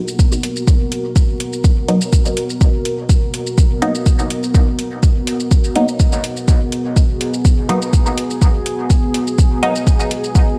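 An up-front electronic kick drum leads this hazy, cavernous dub techno excerpt, its deep, tape-warm thud arriving at 0.2 seconds and driving a 124 BPM pulse in 4/4 with a slight 16th-note swing. Around it sits a layered electronic shaker and hi-hat with metallic hats, set further back in studio reverb. A filtered sawtooth chord stab plays muted, full-bodied plucks with a fast attack and short decay, colored by phaser, sidechain pumping and dub echo, and it drops out at 9.7 seconds. Beneath everything, a dark ambient pad of detuned unison sawtooth, sine, triangle and sub octave layers holds sustained chords with a slow attack and long release, washed in chorus, built-in reverb and sidechain pumping. The harmony rests on a single G#m7 chord in G# minor, while vinyl crackle with light reverb adds a dusty surface to the moody atmosphere.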